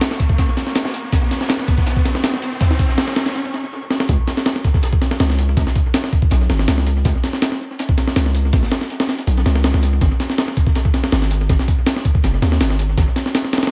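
A gritty, pitched-up breakbeat kit with a thumpy kick and tape-warm compression drives this raw, atmospheric drum and bass excerpt, its hits trailed by dub echo in a dry, echo-heavy mix. For the first 3.3 seconds an electronic riser builds alongside a very quiet, dark, saturated second breakbeat kit and a faint, dreamy reversed texture with a granular shimmer. After a brief stop and a drum fill at 3.9 seconds, the drop arrives at 4.1 seconds with a deep, long sine 808-style bass sitting up front beneath the breaks.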